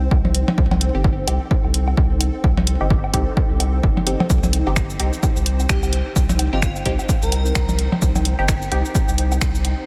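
A saturated sub bass sits up front with a deep, thick sine tone, pumping against a punchy, tape-warm electronic kick drum and an analog drum machine of cabasa, finger snaps and hi-hat in this hypnotic, cool minimal techno excerpt with a swung 16th-note feel. In the background, a cloudy granular pad and a pulsing gated texture blur together with reverb and chorus, while delayed woodblock and percussion blips and a muted, filtered dub chord stab with phaser add motion over a C minor chord. An airy, dreamy lead with vibrato and chorus appears only briefly, from 5.7 to 7.9 seconds.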